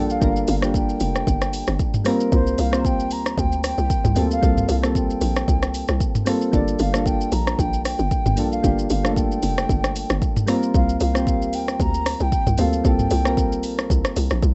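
Soulful and late-night, this amapiano groove floats a breathy concert flute melody with tape echo over round, warbling electric-piano-like synth keys with chorus, a hollow, bouncy log drum bass and an up-front electronic afro-pop kit of deep kick, metallic hi-hat, rim click, shaker and toms, all set on a Gm9 to C7sus4 vamp in a rough home-demo mix with light reverb and a muffled top end.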